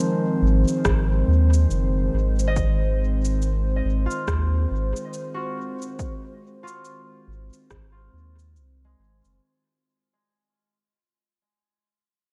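A swung 70 BPM groove in 4/4 from a punchy, overdriven electronic kick and an electronic cabasa and rim click trailing dub echo sets a hazy, peaceful ambient dub mood in Ab mixolydian. A deep, round sine sub bass sits up front beneath a warbling, lo-fi pad that holds a sustained Ab7 chord, darkened with chorus, reverb and gritty 12-bit sampler texture, while a bright concert harp plays ringing arpeggios through tape echo until 10.2 s. Cut from a longer piece, the fairly dry mix fades out from 0.3 s to 9.4 s.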